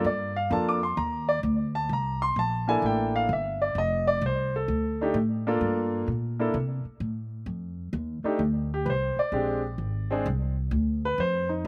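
This jazz piano trio piece has a playful, relaxed mood and a swung eighth-note feel in 4/4, taken from a longer performance. A clear, natural grand piano carries the melody across the full 11.7 seconds, while a woody upright bass with steel strings, played pizzicato, holds down the low end throughout. Both instruments sit up front, and the recording is dry, made outdoors with little reverb, so each note comes through plainly. The harmony moves from Gm7 through C13 and F13 to Am before settling on F7 and Bb9. At 7.5 seconds the piano opens a solo that runs to the close, with the bass still underneath.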